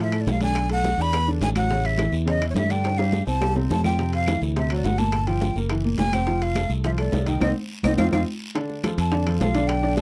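Afro-Cuban jazz at a danceable 210 BPM in F major, tuned slightly flat, with a breathy flute carrying the melody up front over a boxy, slightly detuned upright piano and a growly, bright fingered electric bass. Ringing congas, tight high-tuned bongos, metal-shell timbales and woody claves keep the percussion in the background, joined by a raspy guiro. Drum fills arrive around 2.8 and 7.4 seconds with a band accent at the second, and the close, dry 1970s-style studio sound frames this sophisticated excerpt.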